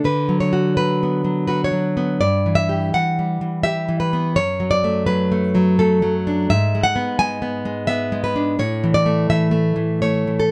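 Romantic classical guitar music unfolds in this short excerpt, a tender, nostalgic passage in triple metre played with a flexible, rubato feel. A single fingerpicked nylon-string guitar carries everything from 0.0 to 10.5 seconds, reaching from its low bass strings up into a bright upper register. Its tone is full-bodied and up front, and close, detailed microphones catch the small squeak of fingers shifting along the strings. The harmony moves through Bm/D, Em/G and D/F#, then turns toward A major by 6.5 seconds, passing through G#m7 before settling on A. A light reverb gives the instrument a little air around it, and the fragment is cut from a longer piece.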